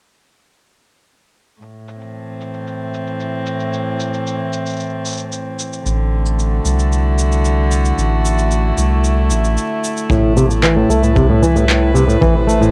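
Wistful and delicate, this folktronica excerpt opens at 1.6 seconds with an airy, bowed string quartet holding sustained chords with a cassette-tape tint over overdriven, filtered electronic cabasa and handclaps; a round, deep analog bass joins up front at 5.9 seconds, and after a brief break a boxy, fingerpicked swing-style acoustic guitar with tape echo and a filter sweep arrives at 10.1 seconds alongside a punchy kick drum set back in the mix, the whole piece home-recorded on cassette with light reverb.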